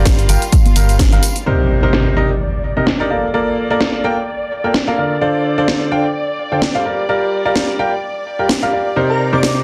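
Piano house in G minor at 128 BPM with a light swing, soulful and bittersweet, built on a clear, worn grand piano riff with vintage 12-bit sampler grit and delay, up front over rich, biting symphonic strings holding sustained chords, both pumping to the sidechain. A hollow, organ-like FM bass and a dry, punchy analog kick drive only the opening, ending by 1.2 s, while bright, hard-handed tambourine and congas sit in the background briefly and a layered house kit with a cracking, tape-warm snare runs throughout. An electronic impact lands at 1.5 s as filter sweeps move across the drums and strings, and an airy, dreamy, detuned lead with chorus and cassette tape colour slips in at 9.1 s, all under a moderate plate reverb and a dense, heavily limited master.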